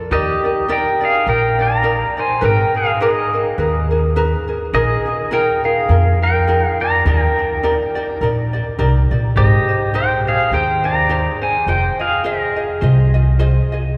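A bright, twangy pedal steel guitar carries the melody up front, played with fingerpicks, slide and volume swells, in this relaxed, sunny Hawaiian piece at 104 BPM with a gentle swing, cut from a longer passage in E-flat major. A light, fingerpicked acoustic ukulele plays the accompaniment through changes such as Ebmaj7, Abmadd9 and Bb7sus4, while a woody, growly pizzicato upright bass sits prominently underneath. The whole performance floats in a lush cathedral-like reverb, as if recorded in a church or concert hall, with the ukulele ringing on to the end at 14.0 seconds.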